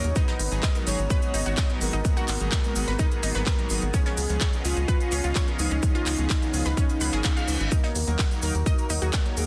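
A bittersweet, expansive stretch of progressive house at 127 BPM opens on a round, dark octave-layered synth lead carrying the melody over a lush, detuned unison pad, glossy retro polysynth stabs, a punchy sawtooth sequencer bass, a house kit with crisp hats and handclaps, and a grainy, distant cabasa, with the lead, pad, stabs and bass all pumping against the sidechain. From 0.2 seconds a bright unison pluck plays arpeggios with a cassette-tape tint, joined by an up-front electronic kick and a very quiet gated 80s kit of snare, hi-hat and shaker in an airy stone room, while the harmony moves from Abm7 through Db7 to Ebm. A reverse cymbal appears in the background at 7.0 seconds, and the whole passage sits in a dense, heavily limited modern master.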